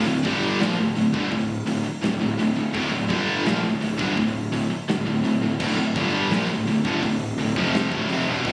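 Three picked electric guitars and a fuzz-laden bass open this short heavy metal fragment together on a D minor chord, and a big acoustic rock kit joins at 0.2 seconds. The mood is heavy and aggressive, moving at a straight 84 BPM in 4/4. Sitting up front, the bass is direct and amped, overdriven and growly in the low register. Behind it, the guitars churn through low riffs: one bright and overdriven, one scooped and high-gain, and one tight and double-tracked. The drums sound dark and smooth in a big room, with a medium-tuned snare, a punchy kick, hi-hat and crash cymbal. Captured on a phone in the room with light studio reverb, the whole 8.5-second passage stays on that single chord.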